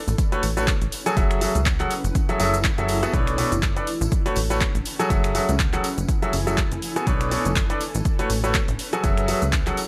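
A blurred, granular cloud pad opens this bittersweet, energetic piano house excerpt at 0.0 seconds, sitting mellow and detuned in the background with its own built-in reverb and a sidechain pump. Within moments a punchy, funky analog bass enters, its wave-folded sawtooth and pulse tones shaped by a filter pluck with a fast attack and pumping with the sidechain. An overdriven analog drum machine supplies finger snaps, handclaps, hi-hat and shaker, while a dry, overdriven electronic kick drives the 122 BPM pulse and a close tambourine sits far back in the mix. At 0.3 seconds a bright baby grand piano takes the riff up front, brilliant and intimate with audible action noise, touched by digital delay and sidechain pumping. The harmony cycles through A69, F#m9 and Bm9 in F# minor with a light swing on the 16ths, and the overall sound is close and dry.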